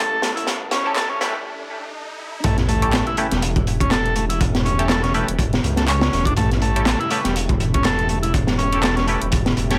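A swaggering, energetic breakbeat cut at 122 BPM with a swung sixteenth feel, built over an A7 chord. A gritty, saturated breakbeat kit with a high-tuned snare and tight kick sits up front, joined from 1.0 seconds by a punchy analog drum machine adding handclaps and hi-hat. Underneath, a thick, menacing detuned saw bass and a buzzy overdriven combo organ riff with tape echo drive the groove, a round tonewheel organ with slow rotary and sidechain pumping holds sustained chords in the background, and a nasal, band-passed chord stab with phaser and tape echo enters at 0.9 seconds. A brief breathy jazz flute note with an old record sound appears during the build-up, while a background riser and sub drop carry the build-up and break into the drop at 2.4 seconds.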